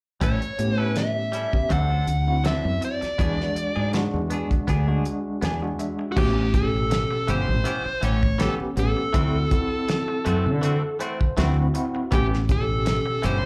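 Laid-back and soulful, this straight-eighth soul blues moves at 81 BPM in 4/4 with a light sixteenth-note swing, captured live in a club through the venue's PA with a touch of room reverb. A dark, smooth lead guitar carries the melody up front, its overdriven tone thickened by plate reverb and slapback echo, while a bright, twangy clean guitar recorded direct adds compressed stabs beneath it. A woody fretless bass with a growly, round punch and lush chorus anchors the low end alongside a damped 70s drum kit with a fat snare, tight kick and dark cymbals. From 0.6 s a barky, gritty tine electric piano joins through a combo amp with fast tremolo, stepping forward for fills at 5.0 s and 10.6 s. The harmony moves through A7, D7 and E7 before settling into A mixolydian at 6.2 s over A9 and D9 chords, and the passage is cut from a longer piece.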